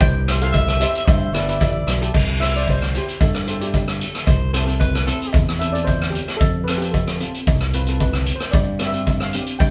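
Calypso with a carefree, festive feel: a mellow, shimmering lead steel pan carries the melody and takes a solo from 2.1 seconds over growly fingered electric bass, an up-front street-band kit with dark cymbals and a boomy kick, a background cowbell, a bright, dry second steel pan comping chords, and an edgy, vibrato-laden alto saxophone line that plays until 5.4 seconds, all heard as a band playing live in one room with moderate reverb in this cut from a longer piece.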